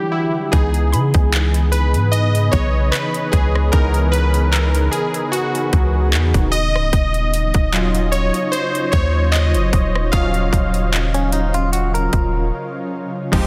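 A slow 4/4 groove with a light swing on the sixteenths sets a late-night, longing mood in this contemporary R&B excerpt. Warm analog keys open at 0.0 s and carry the lead throughout: round, detuned sawtooth chords with a filter sweep, a bright edge and chorus, sitting up front. Behind them, also from the very start, an ethereal, airy pad holds sustained chords, its slow-attack, detuned unison layers softened by ensemble chorus, built-in reverb and phaser. At 0.5 s a trap kit arrives, electronic and overdriven, with a hard-clipped kick, metallic hi-hats, handclaps, rim clicks and crash. Alongside it comes a deep, mellow 808-style sine bass with long, decaying notes. A very quiet, woody mallet-like FM pluck adds percussive glints high above, and from 11.1 s a twangy, clean electric guitar recorded direct picks brief delayed arpeggios, all within light digital ambience and a dense, heavily limited modern master.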